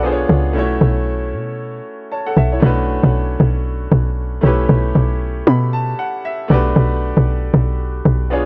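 A tight log drum bass sits up front, its punchy, percussive tone built from an FM body with a noise layer, a fast attack and a decaying tail, playing from B1 to B2 through the whole 8.5 seconds. This is a late-night, hypnotic amapiano passage cut from a longer piece, moving at 116 BPM in 4/4 with a 58% swing on the sixteenths. A clear concert grand piano supplies the accompaniment from A3 to B5, open in character with a deep low end, and it plays a fill from 5.2 to 6.8 seconds. The harmony drifts from C#7b9 through F#m7/B, Bm7 and A7/B before settling on Gmaj9/B, with much of it resting over a B in the bass. The recording carries a small room ambience and the worn, warbling character of old cassette tape, with a warbly pitch drift that adds to the hypnotic, late-night mood.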